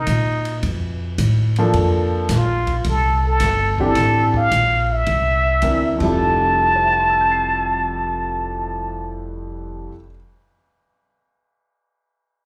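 Sophisticated and playful, this short cut from a longer small-group swing and bop jazz piece in F major at 108 BPM opens with a breathy, wah-wah plunger-muted trumpet carrying the melody with light vibrato, over a woody, thumpy pizzicato upright bass and an open drum kit with dark cymbals and a boomy kick that drops out at 6.1 seconds, while a warm grand piano with long sustain enters at 1.6 seconds, trumpet and piano both touched by plate reverb and slapback echo, the whole heard through a live club PA with moderate room reverb.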